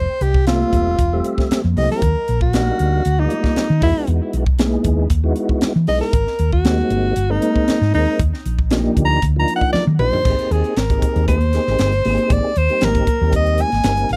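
A dry, close studio sound with a 1970s flavor frames this slick, bright electric jazz fusion fragment, cut from a longer piece. A soprano saxophone leads up front with a warm, close-miked jazz tone, using vibrato, subtone and scooped notes in a solo that runs to 10.3 seconds, while a dark, round, punchy hollow-body electric bass sits equally forward. A polished, airy drum kit with a high-tuned snare and punchy kick plays fills at 1.6 and 9.7 seconds, a clean, warm tonewheel organ with key click, chorus vibrato and slow rotary speaker fills in major-ninth chords, and ringing, distant congas played with soft hands sit in the background.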